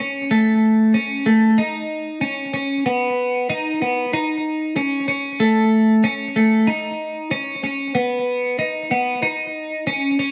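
A bright, twangy twelve-string electric guitar plays alone, clean and picked, sitting up front with lush chorus and analog delay in this ethereal, haunting dream pop excerpt at 94 BPM in 4/4. Its compressed line stays between A3 and D#4 over a straight feel, tuned to A4 = 441 Hz. A moderate spring reverb and a layer of vinyl crackle surround the 10.3-second fragment, cut from a longer piece.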